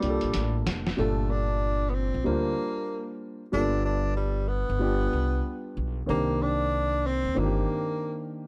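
A swung sixteenth-note feel opens this nocturnal, mellow jazz-hop excerpt, with a muffled, pitched-down sampler-style kit playing a hi-hat and snare fill that ends at 1.0 s, while a woody, thumpy pizzicato upright bass with tube saturation, a dark, boxy baby grand with short sustain, and a breathy solo tenor saxophone melody with light vibrato and scooped notes carry the Gm9, G7 and Cm9 chords through a small, gritty room.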